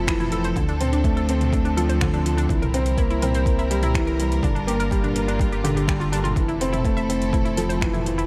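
A straight 4/4 groove at 124 BPM comes from an overdriven electronic kick and a deep house kit of finger snaps, metallic hi-hats and toms, set in a small room, driving this hopeful, tender piano and strings electronica in F major that moves from Fmaj7 through Dm7, C7 and Gm7 before returning to Fmaj7 at 6.4 seconds. Up front, a dark, woody upright piano with audible action noise and a slightly detuned, vintage character plays a riff through digital delay, over a round analog bass whose sidechain pumping it shares with a rich, bowed string section holding sustained chords with light vibrato. A bright, chorused analog pluck with a filter sweep and short decay adds arpeggios through delay, all under light reverb in this excerpt from a longer piece.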